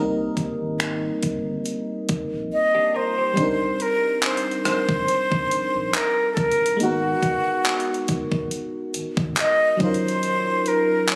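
A glassy, bell-like FM electric piano with chorus opens this sensual, moody contemporary R&B excerpt over a round sub bass in the background, joined at 0.4 seconds by a crisp, overdriven 8-bit drum machine of thumpy kick, hi-hat, rim click, finger snaps and handclaps, before a breathy, close-miked concert flute carries the melody up front from 2.5 seconds and a dark, clean semi-hollow electric guitar adds brief arpeggios at 2.7 seconds, the whole mix sounding as if caught on a phone in a reverberant club.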